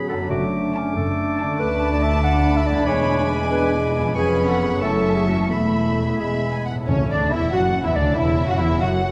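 Classical orchestral music in a lilting 6/8, cheerful and graceful, moving at roughly 86-96 BPM in A major with a flexible, rubato feel. Lush, vibrato-rich violins carry the melody over a second violin line, while dark, woody violas, expressive cellos and a bowed double bass section fill out the harmony and bass. Solo woodwinds colour the opening: a bright, present oboe and a warm clarinet weave second lines while a mellow, roomy bassoon adds accompaniment, and all three fall away by about 6.7 seconds. A mellow, close-miked French horn section holds sustained chords alongside ringing, fingerpicked harp arpeggios throughout. As the harmony settles onto A at 6.9 seconds, a pure silver flute enters in the background and the timpani add a very quiet, articulate touch with hard mallets. The ensemble sits in a wet scoring-stage reverb, with lossy compression artefacts, and the passage is cut from a longer piece.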